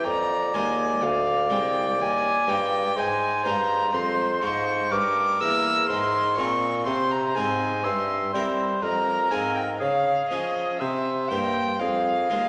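This grave, flowing excerpt from a baroque-style sonata movement opens with oboe, violin and bassoon sounding together, joined a moment later by harpsichord continuo. At a slow 61 BPM in 3/4 and F minor, the close-miked oboe carries the melody with a light vibrato, while the solo violin plays a second line above it with an airy, nasal, gut-string tone and period-style bowing that sits up front in the mix. Underneath, a dark bassoon holds the bass with a smooth top and its own gentle vibrato. The harpsichord fills in a full, plucked Flemish-style accompaniment on two sets of strings. The harmony stays rooted in F minor, passing through diminished and dominant-seventh colours and a turn to Db before settling back on Fm near 11.8 seconds. A wet recital-hall reverb with a 1.7-second decay surrounds the ensemble, giving it a resonant, spacious setting.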